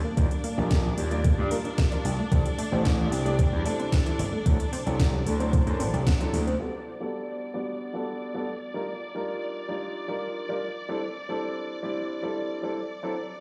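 A straight pulse at 112 BPM drives this groovy, sunny nu-disco cut from a longer piece, with a thumpy, overdriven electronic kick sitting up front beside a house kit of cracking snare and metallic hats. A gritty slap bass, punchy and bright with overdrive and tube saturation, anchors the low end over chords moving from Ebmaj9 through C6 and D7. A round analog pluck plays arpeggios in the background, treated with chorus, cassette tape, dub echo and sidechain pumping while a filter sweep runs across it. Behind these, a lush string section holds sustained chords at a distance, its vibrato roughened by vintage 12-bit sampler grit and shaped by sidechain pumping. The drums, bass and pluck drop away around 6.6 seconds after a band accent at 6.1, leaving a short-sustain grand piano with tape echo and a filter sweep over the strings as the harmony shifts to Gmaj7, all set in a stone-room reverb.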